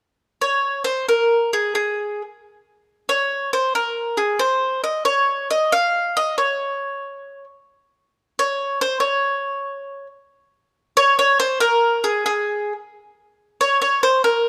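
A lone acoustic mandolin opens this short Italian folk piece at 0.4 s, its picked double strings ringing with a woody, warm tone. The mood is lively and romantic, set in Db major with a 6/8 metre at 91 BPM counted in dotted quarters, and a straight feel. The mandolin carries the whole performance as a solo voice, its melody staying between Ab4 and F5. The opening phrase returns at 10.3 s, and the instrument plays on until 14.5 s, where this fragment of a longer piece breaks off. Close, detailed microphones place the mandolin up front, with a light reverb adding a touch of space around it.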